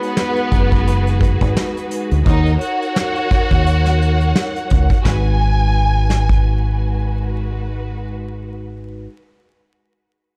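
Boom-bap hip-hop in G# minor at 86 BPM, this moody, gritty excerpt rides a swung 16th-note feel over a dry, gritty hardware sound with vinyl crackle and a small room ambience. A soft brush drum kit sits up front with a punchy kick, medium-tuned snare and hi-hat, playing until 6.4 seconds, while a deep dub fingered electric bass, dark and round, enters at 0.5 seconds and anchors the low end through to the close. A lush, distant violin section carries the expressive bowed melody with vibrato through tape echo, falling away at 7.1 seconds. Beneath it, a symphonic string section adds soft-attack stabs, and a mellow vibraphone with soft mallets and slow motor vibrato rings out in the accompaniment with a cassette-tape coloring. The harmony moves from G#m7 to D#m7 and back to G#m7 as the music shifts into a second section at 5.1 seconds.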